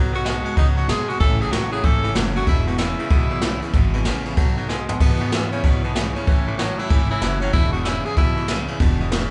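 A swung 4/4 feel drives this rollicking, retro rockabilly cut, with an up-front brushed drum kit of dark cymbals and a boomy kick, a woody, growly plucked upright bass, a clean, twangy electric guitar riff and a full-bodied steel-string acoustic guitar picking accompaniment in the background, while a bright tenor saxophone carries the melody with vibrato in a lightly reverberant room sound, and a drum fill from 4.7 to 5.0 seconds marks the return of the opening section.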